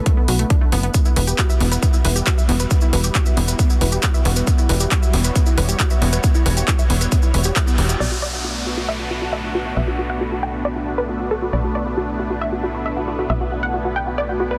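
Emotional and euphoric, this uplifting trance fragment opens with a thick, detuned pad sustaining chords under the phaser's shimmer, sidechain-pumped pluck arpeggios trailing digital delay, a punchy up-front electronic kick, a layered dance kit with handclaps and metallic filtered hats and a tight, nasal sawtooth sequencer bass, soon joined by a grainy cabasa, until at 8.0 seconds the drums drop away as a chorused pluck melody takes over above the bass and pad and an electronic downlifter sounds until 11.5 seconds, all in a dense, heavily limited modern mix with light reverb.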